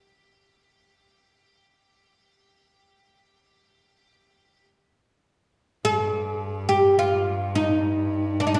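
A wet recital-hall reverb, with a 1.6-second decay, surrounds this melancholic, longing fragment of an Arabic maqam ensemble piece in free time. A woody, deep oud sits up front and carries the melody, plucked with a plectrum on its fretless double strings between D4 and Ab4+50c. At 5.8 seconds a single bowed cello enters beneath it, holding a nasal, intense G2 drone with light vibrato at a quieter level until the fragment ends at 8.6 seconds.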